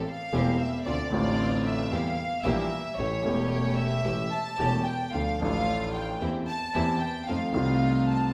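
Melancholic and passionate, this short cut from a longer tango moves in 4/4 with a rubato feel, set in a recital hall whose wet reverb gives it the air of a church or concert hall. A bowed studio violin section carries the second line and is featured as the solo voice across the whole passage, its tone pure and floating with a soft attack, played sul tasto and placed up front. A grand piano with a warm, short-sustained sound accompanies it from the start, also up front, reaching down into deep bass register. A bowed chamber string section adds earthy stabs with light vibrato from the background, while a single bowed double bass holds the low end with a biting, nasal edge. The harmony drifts through minor-seventh, diminished and dominant chords, closing on F7 at 7.3 seconds.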